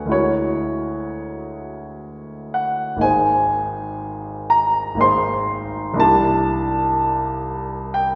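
Impressionist classical solo piano in an unhurried triple metre with a freely breathing rubato, hazy and serene in mood. A clear concert grand sits up front with a deep, open bass, spanning a broad register while drifting through lush extended chords. The sound is bathed in the wet reverb of a resonant concert hall, and this short excerpt of about 8.2 seconds is cut from a longer piece.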